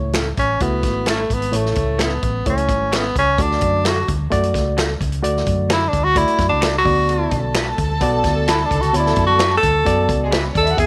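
A straight, danceable 4/4 groove at 130 BPM drives this uplifting, uptempo 1960s-style soul excerpt. A vintage drum kit with a punchy kick, medium-tuned snare, hi-hat and a rolled-off top is joined by very quiet, close and dry finger snaps, while a round, dark hollow-body short-scale bass anchors the chords A, D and B minor. A barky, reedy electric piano, lightly overdriven through its built-in speakers, carries the accompaniment, and a slightly broken-up, lo-fi electric guitar adds picked stabs from the background. Up front, a tenor saxophone takes a jazz-style solo throughout, with light vibrato, scooped notes and a smooth, warm top. At 7.1 seconds an intimate chamber string section enters with a soft-attack, sul tasto second line touched by slapback echo, all held in a light, small-room ambience.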